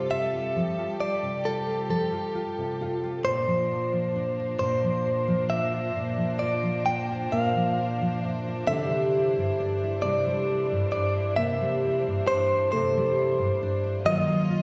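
Acoustic folk-pop ballad in a slow 6/8, intimate and heartfelt, cut from a longer piece and drifting from Fadd9 through Bbadd9 and Cadd9 to a closing Ebmadd9. A clean, compressed electric guitar with a scooped tone and tremolo carries the melody up front beside a full-bodied fingerpicked dreadnought acoustic guitar. A close chamber string section holds soft-attack sul tasto chords with light vibrato, while in the background a dark, felt-muted upright piano adds short-sustained arpeggios with audible action noise, all set in the generous reverb of a recital hall.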